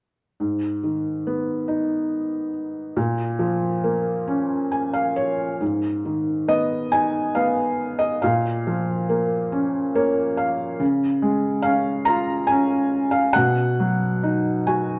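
Dark and reflective, this lyrical classical solo piano passage, cut from a longer piece, unfolds in a rubato three-four feel on a felt-muted upright piano that sits up front with a soft, intimate, mellow tone. A second section begins at 5.6 seconds, and short felt piano fills recur, the last arriving at 14.2 seconds. A moderate recital hall reverb surrounds the piano within a dark, warm production.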